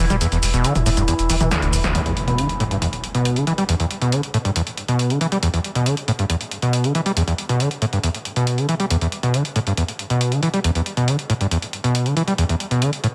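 Lightly reverberant, this fragment of driving peak-time techno runs at 138 BPM in a straight 4/4, relentless and intense in E minor. An overdriven acid bass riff sits up front for the whole stretch, squelchy and gritty with a resonant sawtooth filter sweep, coloured by distortion, analog chorus and tape echo. A punchy analog drum machine carries hi-hat, shaker, snare and toms, with a drum fill just before the opening drop ends. During that drop, a deep, thick saturated sub bass holds a low E under a wave-folded, overtone-sweeping drone that hovers in the background through chorus, built-in reverb and phaser. Both fall away around the two-second mark as an electronic impact hits and the music settles onto E minor, leaving the acid riff and drums to press on.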